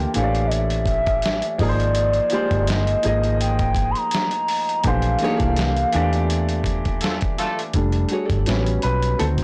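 R&B with a neo-soul lean, this short excerpt moves at 83 BPM in 4/4 with a gently swung sixteenth feel, its mood smooth and sensual over lush chords such as Bbmaj9#11, Abmaj9#11 and F69. A hollow, clarinet-like synth lead carries the melody with a soft attack, sustained notes, vibrato and a chorus shimmer, singing until 7.0 seconds. Beneath it, a woody upright piano sits up front in accompaniment, while a dark, foam-muted electric bass gives round, punchy low notes with transformer saturation, and a dusty sampler-style drum kit of hi-hat, thumpy kick and medium-tuned snare sounds gritty and overdriven, as if re-recorded in a small room. A full-bodied, fingerpicked nylon-string guitar adds a second line with slapback echo from 2.3 seconds, and a clear, vintage horn section lands brief pop-style stabs around 7.0 seconds at the close of a band accent passage. From 7.7 seconds the upright piano takes a solo into the final chords, all set in light reverb within a blown-out, overdriven overall sound.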